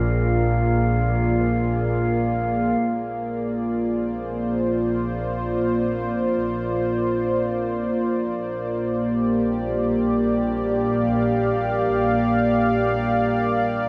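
Drenched in a huge, echoing reverb, this serene ambient passage, cut from a longer piece, floats in free time around Bb mixolydian, as if heard in a vast space. A smooth, detuned analog pad sits up front for the whole 13.9 seconds, holding slow-attack chords from Bb3 to F5 with a chorused, dark sheen and a sub octave beneath. At the opening, a barely audible felt-like synth key part traces muted, intimate arpeggios, while a very quiet drone with moving, ring-modulated overtones and a glassy, ethereal glass harmonica note on F5 hover alongside, all three gone by 3.2 seconds. Underneath, a bright studio double bass section holds a bowed Bb1 with light vibrato and an intense ensemble tone, fading in from 2.8 seconds onward. The harmony drifts from Bb7 to Bbadd9 and settles on Gm7/Bb at 8.3 seconds, keeping the peaceful mood suspended to the end.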